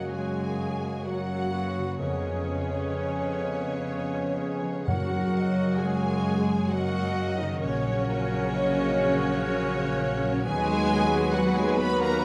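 A slow romantic classical movement for symphony orchestra in 3/4 at 64 BPM, warm and serene, with a freely breathing rubato pulse in F# major, taken from a longer piece. A rich, focused violin section carries the melody, joined by an airy, bright flute ensemble, a mellow clarinet and a soft, expressive violin section on second lines. Beneath them sit a clear viola section, a distant bassoon, a dark trombone section and roomy French horns holding sustained chords, ringing harp arpeggios, warm trumpet stabs, and an intense double bass and clear cello foundation, while timpani on F# sound briefly from 4.9 to 6.2 seconds, all bathed in a wet concert-hall reverb.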